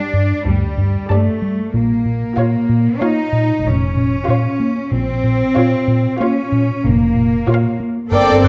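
Tense and eerie, this cinematic suspense cue at 94 BPM in 5/4 sets a background violin section melody, a floating second violin line, woody vibrato violas and an up-front, distant-sounding cello section, all bowed sul tasto, over a round, deep analog bass riff entering at 0.1 s and a close double bass section from 0.5 s, while a background baby grand piano adds texture only at the start and again from 8.1 s, the chords moving from Gsus2 to Bb minor in a dark production with a scoring stage reverb and faint mains hum.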